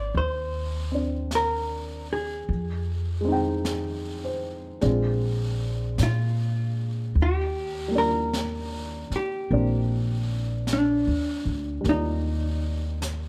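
A slow, swung 4/4 pulse at 51 BPM from high-tuned brushed snare and hi-hat carries this intimate, tender jazz ballad in Eb major, where a clean, compressed hollow-body electric guitar picks the melody up front over dark, mellow baby grand piano chords with audible action noise and a woody, thumpy pizzicato upright bass, set in light reverb as the harmony moves from Ab69 through Fm7 and Bb9 to Ebmaj7 at 7.2 seconds in this passage cut from a longer piece.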